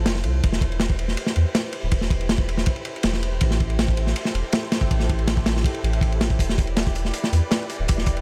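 A crunchy breakbeat kit drives this frenetic, raw drum and bass and jungle excerpt, its tight kick, medium-tuned snare and dark ride cymbal sitting up front with a saturated, gritty edge in a small, dry room. A deep, round dub sub bass with tube saturation holds the low end while a silky, vintage string machine with ensemble chorus sustains soft chords through Cmaj7, Am7 and Em7. At 6.4 seconds a second layer of high-passed hi-hat and high-tuned snare slips in quietly in the background.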